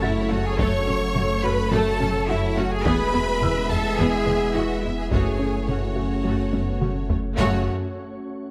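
The recording opens on a thick bed of bowed strings and sustained brass: a distant, clear violin section carries the melody while a close, expressive studio violin section plays a second line above it, with a lush, vibrato-rich viola section underneath and mellow French horns and a classical-style trombone section holding chords in the background. This short cut from a longer cinematic, hybrid orchestral and electronic film score feels futuristic and relentless, moving in a straight 4/4. A glassy, ethereal FM pad with ensemble chorus and its own reverb sits behind the orchestra, while a soft, round, nasal synth pluck spins quiet arpeggios and a deep, punchy sub bass with a pitch-drop attack anchors the low end alongside smooth, even cello and double bass sections. A very quiet, felt-muted upright piano adds a dark, boxy, intimate texture up high until 5.1 seconds. A close, dry taiko ensemble struck with heavy sticks enters at 0.6 seconds and drives the piece from the background, playing a drum fill from 6.5 seconds. 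The whole ensemble sits in a moderate scoring-stage reverb that gives the orchestral parts a sense of space.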